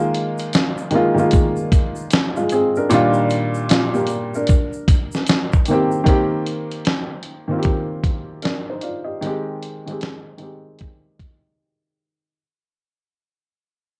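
Lo-fi hip hop at 76 BPM in C minor, reflective and nostalgic, with a swung 16th-note feel in this short cut from a longer piece. A soft, felt-muted upright piano sits up front with short, mellow chords through cassette tape and a low-pass filter, moving from Bb7sus4 through Ebmaj9/Bb and Cm7 to Abmaj7. It is joined by a gritty, compressed sampler-style drum kit with a thumpy kick and fat snare and a grainy egg shaker in the background that stops at 6.1 seconds, as the music begins fading out toward a brief break at 11.6 seconds, all set in a home cassette recording with moderate booth ambience.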